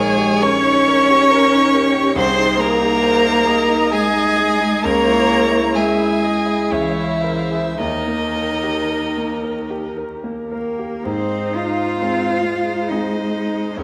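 Classical slow romantic movement for piano quintet in Ab major, a tender 3/4 fragment at 53-72 BPM with rubato, where a close, smooth violin sings the melody over a second violin's rich, even line and a distant cello's full-bodied counterline, while a soft-attacked viola with expressive portamento and an intimate grand piano with audible action noise supply the accompaniment, all four strings bowed with vibrato, and the whole quintet bathed in recital-hall reverb and vinyl crackle as the harmony settles onto Ab at 11.1 seconds.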